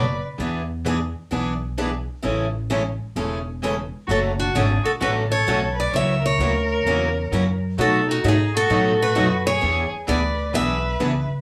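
Swinging and charming, this excerpt of acoustic string swing in the jazz manouche style moves at 130 BPM in 4/4, with two picked acoustic guitars and a woody, thumpy pizzicato upright bass on gut strings carrying the accompaniment throughout over chords such as E7, Amaj7, Dmaj7 and B7. After a brief blip at the start, a bright picked steel-string guitar takes the melody at 4.1 seconds, complete with finger squeak, while a single violin adds a second line with soft-attack bowing, vibrato and expressive portamento. The rhythm guitars sound bright and freshly strung, the swing-style one notably boxy, and a small room reverb places the ensemble a little further back in an intimate space.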